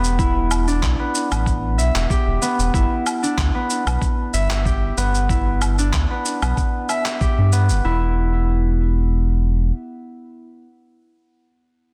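Organic downtempo in a mystical, warm mood, this short cut from a longer piece sets bright, ringing fingerpicked concert harp arpeggios, touched with vintage 12-bit sampler grit and digital delay, over a round, deep analog bass with sidechain pumping, a thumpy electronic kick and gritty sampler-style cabasa, woodblock and handclaps. It moves from Em7 to G before the drums drop out by 7.8 seconds, and the harp and bass carry on, the bass stopping at 9.7 seconds and the harp ringing until 10.6 seconds in a light digital ambience.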